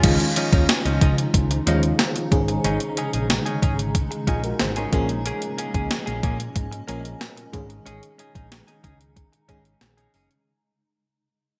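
Bright, 1980s-style digital production with a moderate plate reverb frames this nostalgic, romantic pop fragment, which fades out across its whole length as it is cut from a longer piece. An up-front, overdriven 12-bit drum machine with a thumpy kick, medium-tuned snare, hi-hat, tambourine and crash, bathed in gated reverb, plays alongside a dark, round fretless bass treated with analog chorus. A full-bodied FM electric piano with tremolo, a compressed, picked clean guitar riff carrying subtle chorus and delay, and a mellow granular pad drifting cloudy and blurred in the background move through Dbadd9, Absus4 and Bbm7.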